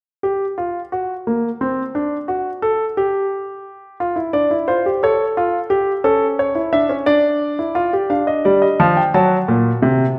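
A concert grand piano sits up front in a wet recital-hall reverb, its tone warm with a deep bass and short sustain. This serious, contemplative baroque-style three-part fugue in a straight 6/8 is played solo from 0.2 to 10.1 seconds, spanning Bb2 to A5. After an unharmonized opening, the harmony moves through Dm, A and A/C# back to Dm before reaching G5 and F#dim, and the passage is cut from a longer piece.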